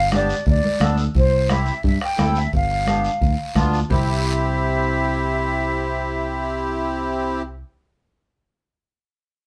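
A breathy, hollow flute carries the melody from a distance in this festive, danceable cumbia excerpt in C major at 174 BPM. A reedy, sweet accordion with light tremolo tuning and a round, up-front fingered electric bass fill out the harmony over G, C and G7. A soft-beater bombo, ringing congas set in the background and a raspy guiro drive the groove until 4.0 s, after which flute, accordion and bass carry on in a moderate studio reverb.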